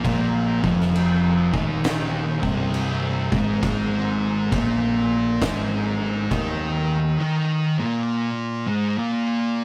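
Stoner and doom metal at a crawling 67 BPM in 4/4 with a swung eighth-note feel, this brooding, heavy excerpt sets two dark, up-front fuzz guitars on a distorted riff ranging from C2 to Eb4 over an Eb5 chord that moves to Ab5 at 3.6 seconds. Underneath, a bright, overdriven picked electric bass growls from C1 to Eb2, and an oversized low-tuned acoustic drum kit with a punchy kick, fat snare and dark crash cymbal sounds gritty and saturated in a pumping stone room. The drums drop out at 6.6 seconds and the bass at 7.2 seconds, leaving the guitars to continue through a rough rehearsal-room recording with moderate reverb.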